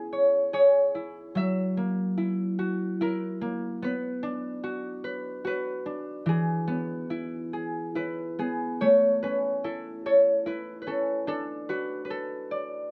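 A solo concert harp opens this tender, sleepy piece of children's music, its mellow, ringing fingerpicked notes sitting up front in light reverb as it drifts through a rubato three-beat sway before settling onto a new passage at 8.8 seconds, the short clip cut from a longer piece.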